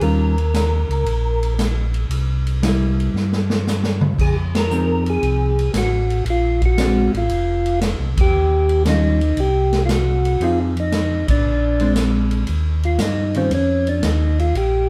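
A percussive, clean tonewheel organ carries the melody through a slow rotary speaker, while a second, mellow and lightly overdriven organ with chorus vibrato plays the round, dark bass line up front in this soulful soul jazz organ trio excerpt at 116 BPM with a swinging 4/4 feel. A picked hollow-body electric guitar comps underneath until 13.5 seconds, and a big-band drum kit with a punchy kick and natural big-room sound adds a fill around 3.1 seconds and joins the band accents that punctuate the cycle of chords built on Eb9, C7, Fm7 and Bb9. The whole group sits a little back in a moderate studio reverb, and from 12.5 seconds the organ takes a solo over the closing section.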